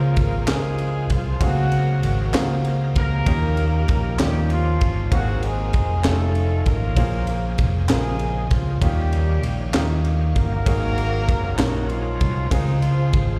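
Slow gospel in 6/8 at 65 BPM in Db major, hopeful and jubilant, cut from a longer piece and heard as a live gig through the venue's PA. A mellow, distant horn section carries the melody with vibrato and octave doubling, over a clear, natural baby grand piano; both parts have a slapback echo. A very quiet, lightly overdriven tonewheel organ adds sustained chords with key click and slow rotary speaker, the dark, round fingered electric bass sits up front, a gritty, saturated fusion kit with a high-tuned snare and punchy kick plays from 0.2 seconds, and hollow group handclaps join at 0.5 seconds over chords moving from Dbmaj7 through Gbmaj9#11, F7alt and Bbm9 back to Dbmaj7.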